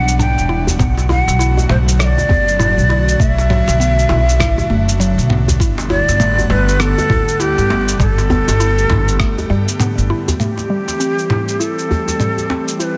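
A dense, heavily limited modern master with light reverb frames this earthy organic downtempo fragment, cut from a longer piece and moving at 100 BPM in 4/4 with a 60% swing on the sixteenths in A dorian. Up front, a breathy, end-blown ney carries the melody with vibrato and tongued, expressive phrasing, its close-miked reed-cane tone roughened by vintage 12-bit sampler grit and trailed by digital delay. Beneath it an airy pad of detuned sawtooth and triangle layers sustains soft chords with chorus and sidechain pumping, while a round, woody FM pluck spins mellow, fast-attack, decaying arpeggios through chorus, phaser and delay. A pizzicato upright bass on gut strings gives a thumpy, up-front foundation until 10.1 seconds, joined by a gritty, overdriven sampler-style kit of rim click, shaker and toms, a djembe with metal rattles and a band-limited vintage tone, and an overdriven electronic kick that thumps until 9.3 seconds, the drums sounding re-recorded in a small room. 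The harmony drifts from Em9 through Bm7 to Gmaj9, then settles on Am7 as a new section opens at 10.4 seconds.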